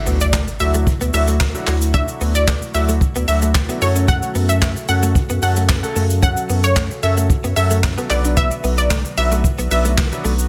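A straight 4/4 pulse at 112 BPM drives this upbeat, carefree dance-pop excerpt in D major, with a brushed jazz drum kit up front (boomy kick, handclaps, hi-hat, shaker and snare) and a thick, saturated sub bass pumping against the sidechain. Over chords moving from Dadd9 to F#m at 3.8 seconds and Bm at 8.1 seconds, a clear concert grand piano with audible action noise plays accompaniment, a glassy FM pad holds ethereal chords in the background, and a direct-recorded clean electric guitar with chorus plays a riff. A round, detuned analog pluck carries the melody through chorus and digital delay, a very quiet electronic impact sounds in the first 1.9 seconds, and the mix stays dry and close.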